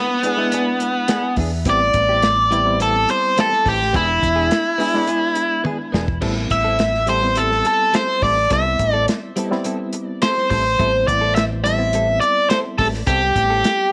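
A lightly reverberant, smoky mix puts a biting overdriven guitar up front, carrying a mournful melody through a straight-eighth soul blues in A minor at 105 BPM, soloing over the opening E7 and Am7 changes until 6.2 seconds. Behind it, a barky reed electric piano with overdrive and fast tremolo adds a brief fill, a bright, compressed clean guitar with subtle chorus adds stabs in the background, and a dry, dark soul drum kit with a tight kick and medium-tuned snare plays a fill into the second section. A round, punchy fingered bass joins at 1.4 seconds, and the cut ends at 13.9 seconds as part of a longer piece.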